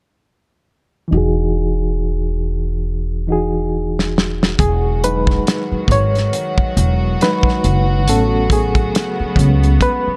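Smooth and introspective, this neo-soul R&B excerpt with a swung sixteenth feel opens at 1.1 seconds with a bright, reedy electric piano under fast tremolo and a filter sweep, over a woody pizzicato upright bass. A dry, damped 70s drum kit with a tight kick and a medium-tuned snare arrives on a fill at 4.0 seconds, and from 4.6 seconds the electric piano takes a solo while a bowed studio string section holds gut-string chords with a smooth top. A small room reverb frames the dark, warm production, with the piano, bass and drums up front.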